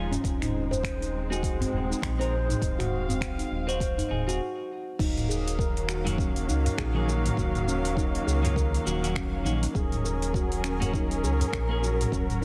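This organic downtempo piece in Eb dorian opens with a ringing handpan playing airy arpeggios, played with the fingertips and trailed by tape echo, over veiled, muted chamber strings that sustain bowed chords with vibrato and a sidechain pump. A round, dark analog bass anchors the low end, and a clean, twangy electric guitar adds picked accompaniment, also pumping and echoing. From 0.1 seconds an overdriven afro-pop kit of metallic hi-hats, shaker, finger snaps, toms and crash enters, joined at 0.2 seconds by a deep, overdriven electronic kick, while a small, band-limited udu sits in the background. At 101 BPM in 4/4 with a loose sixteenth-note swing, the mood is mystical and meditative, resting first on an Ab/Eb chord. A brief stop from 4.4 to 5.0 seconds gives way to a second passage built on Ebm7, and the guitar drops out at 11.8 seconds in this excerpt cut from a longer piece, all within a light reverb.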